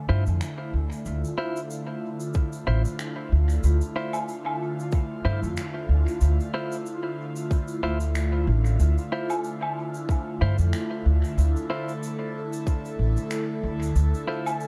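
Spacious and meditative, this ambient dub excerpt moves at 93 BPM in 4/4 with a light swing on the sixteenths, resting on a single Dm9 chord in D minor throughout. An airy, breathy pad with a detuned, noise-layered softness holds sustained chords from the start, its slow attack and long release coloured by chorus and phaser. Up front, a woody pizzicato upright bass carries the low end, joined at 2.3 seconds by a tight, tape-warm electronic kick drum that plays until 12.8 seconds. A clean, compressed electric guitar with a scooped tone adds picked stabs trailed by dub echo, while dry shaker, finger snaps and woodblock fill in the percussion, also sent through dub echo. Light reverb and a small room ambience frame a dark production.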